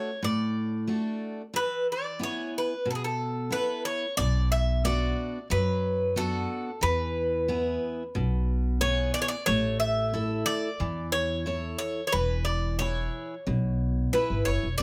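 Greek folk music at a relaxed 91 BPM in a straight 4/4, this excerpt carries an easygoing, warm mood. A Greek bouzouki leads the melody from the start, its picked double strings sounding bright and metallic, with some octave-doubled strings, placed up front and lit by a plate reverb. Beside it, a picked steel-string dreadnought guitar supplies bright, full-bodied accompaniment, also close and forward in the mix. At 4.2 seconds an upright bass enters, its pizzicato notes woody and thumpy, grounding the tune as the chords move from Bm through E and A. The whole is set in a moderate studio ambience that keeps the acoustic instruments natural and intimate.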